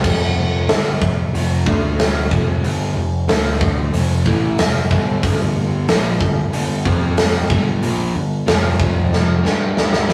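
A rough rehearsal-room recording with small room ambience and moderate studio reverb frames this sunny, confident classic rock excerpt at 92 BPM in a straight 4/4. An overdriven, double-tracked semi-hollow guitar plays a riff of power chords moving among F5, D5 and G5, over a growling, bright electric bass with its own overdrive and a big acoustic drum kit with a punchy kick, medium-tuned snare and bright cymbals sitting up front. The drums close the 10.1-second clip with a fill starting at 9.1 seconds.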